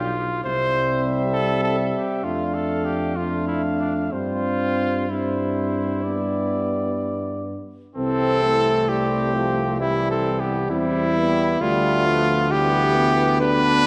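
Set in the wet reverb of a scoring stage, this excerpt from a longer classical brass quintet piece moves at a rubato 65 BPM in C major with a warm, noble mood, as an up-front trumpet with a smooth top and light vibrato carries the melody over a mellow second trumpet line, while a distant, roomy French horn and a clear, vintage-toned euphonium in the background fill out the accompaniment and a tuba with gentle vibrato anchors the bass.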